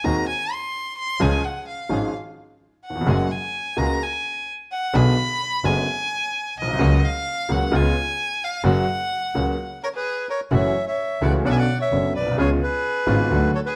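A large studio room with moderate reverb gives this tense, dramatic tango fragment a sense of depth, with the upright piano, violin and bandoneon placed up front. At 129 BPM in 4/4 with a rubato feel, it opens in F# major as a bowed violin with smooth, even vibrato carries a solo over woody, polished piano chords with long sustain and a focused, close double bass played with the bow. Behind them, a dark, lush string section adds smooth-topped stabs. At 9.8 s a reedy, warm bandoneon enters with the melody, and from 10.5 s the harmony darkens into F# minor, moving through F#m7, Bmadd9 and C#7. The piece is cut from a longer work, with the violin and bandoneon sounding until 13.8 s.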